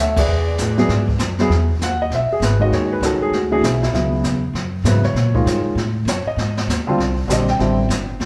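A short section cut from a longer jazz piano trio performance opens with the whole band hitting an accent at 0.1 seconds, then settles into a swinging, warm groove at 197 BPM in 4/4 with swung eighths in E major. The concert grand piano carries the melody from up front, with an intimate, natural tone, deep bass and audible action noise, and from 1.5 seconds it takes a solo over harmony that runs from Emaj7 through a rootless B13, D69, C#m7 and G#maj9#11 before landing on Am7. Beneath it, the pizzicato upright bass sounds woody and growly, with the bright bite of steel strings. The brush kit sits lower in the mix, blending brushed snare, hi-hat, ride cymbal and a boomy kick, with dark cymbals, a medium-tuned snare and a mid-forward, rolled-off top. The trio plays live together in one large studio room whose wet reverb surrounds the sound, and lossy compression artefacts colour the recording. 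The piano drops out at 7.9 seconds, leaving bass and drums to close.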